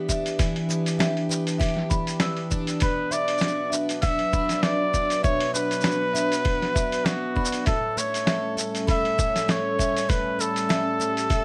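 A mellow, gently lo-fi haze hangs over this short folktronica cut, delicate and autumnal, moving at 99 BPM in 4/4 with a light swing on the sixteenths and a moderate studio reverb around it. A warbling, tape-like pad sits in the background holding sustained chords, its detuned, nostalgic tone coloured by chorus, phaser and its own reverb, while a plugged-in twelve-string acoustic guitar picks shimmering, octave-doubled arpeggios with audible finger squeak. Above them a marimba played with medium mallets adds a vintage, band-limited second line through tape echo. Up front, a pitched-down, muffled sampler-style kit of hi-hat, shaker and medium-tuned snare joins a thumpy electronic kick, both compressed and overdriven. At 2.8 seconds a clear flugelhorn enters with a vibrato-tinged pop-style solo melody as the harmony moves from Em7 to Bm, later reaching A7 at 7.7 seconds.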